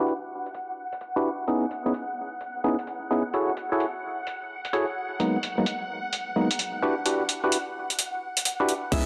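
A lush hall reverb and a low-pass filter give this short cut from a longer UK garage track a soft, late-night haze, while the two-step swing keeps it skippy. Up front, a hollow, percussive organ stab with chorus and delay punches out mellow stabs over a chord cycle that moves through Em9, C#m9, F#m9 and G#m9 before returning to Em9. Beneath it, a silky vintage string machine holds slow-blooming, evolving chords, its ensemble chorus breathing with sidechain pumping. A gritty, pitched-down sampler-style drum kit drives the groove with hi-hats and crash cymbal, overdriven and re-recorded in a large room, while a filter sweep runs across the drums from 0.0 to 8.9 seconds. At 8.9 seconds a ringing, fingerpicked concert harp note, a bouncy, knocking FM bass and a thumpy, overdriven electronic kick set back in the mix arrive just as the clip ends.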